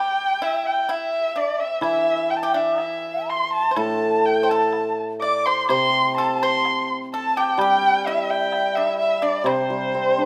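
A moderate recital hall reverb of about 1.5 seconds gives this short cut from a longer Chinese chamber ensemble piece a natural sense of space. The mood is pastoral and festive, set at 63 BPM in 2/4 with a rubato feel in the C gong mode. Up front, a single bowed erhu carries the melody with a dark, woody tone, vibrato and portamento, though it sounds slightly distant. A breathy, bright xiao with a reedy bamboo edge and soft attack plays in the background as a second line, while the pipa adds another, lower second line that is dry and percussive under fingerpicks. A very quiet woodblock enters at 0.9 seconds, and a shimmering, ringing hammered dulcimer joins at 1.8 seconds, its warm accompaniment sitting up front through to the end at 10.3 seconds.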